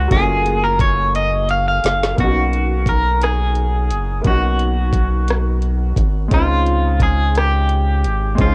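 Tender and intimate, this slow six-eight R&B excerpt at 58 BPM in B lydian sets a twangy, slightly broken-up electric guitar melody with harmonic tremolo and cassette wear, soloing clean over the opening 2.2 seconds, against worn grand piano chords, a rubbery, nasal square-wave bass with transformer saturation, and a produced drum kit of knocking kick, woody snare, metallic hats and rim clicks that enters at 0.1 seconds and plays a fill before the shift to Bmaj9, all within a digital ambience of home cassette recording, moving through F#maj9, Bmaj9 and C#maj9.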